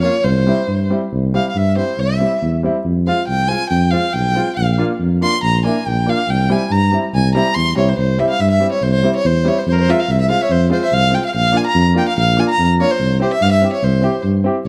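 A straight two-beat pulse drives this festive klezmer clip, and it keeps speeding up from start to finish, giving the music a mounting, celebratory urgency. A close-miked tuba, jazz in style and placed up front, anchors the bottom in a dark low register. Over it an upright piano with a woody, natural tone fills in the middle as accompaniment. The bowed violin, played by a single musician and also up front, carries the soulful melody with expressive vibrato and portamento, taking a solo from 1.1 to 8.0 seconds. The harmony cycles through C, F minor and B-flat before returning to C, all set in a light reverb, and the passage is cut from a longer piece.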